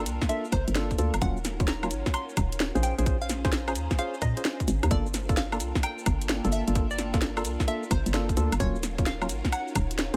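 Soulful, late-night two-step UK garage with a swung groove, cut from a longer piece, built on a hollow, bouncy FM bass and a garage kit of hi-hat, shaker, woodblock and a cracking snare, both up front, along with an overdriven electronic kick. A dark, chorused organ-like stab with tape echo punctuates minor ninth chords moving from Gm9 through Ebm9 and Bbm9, while a bright, detuned square pluck with delay and a moving filter sweep carries the melody. In the background sit a silky vintage string machine and a warbling, lo-fi tape-like pad, both pumping, all inside a light digital ambience.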